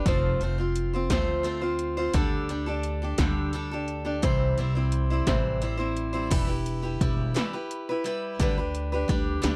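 A picked acoustic archtop guitar opens this short excerpt from a longer folk rock and heartland rock piece, sitting up front with a warm tone and the occasional finger squeak. At 0.1 seconds an upright bass and 80s electronic pad drums join in, the bass played pizzicato with a woody, steel-strung sound. The drums have an analog, electronic character, with a punchy kick, a gated snare, metallic hi-hats and a crash cymbal, carrying a tape-tinged glow. In an unhurried, straight 6/8 sway, the chords move from F through Dsus4 to C, then shift to Em and G/D when a new section begins at 6.3 seconds, giving an open-road, hopeful mood. The sound is dry and close, like a 1970s studio recording with little reverb.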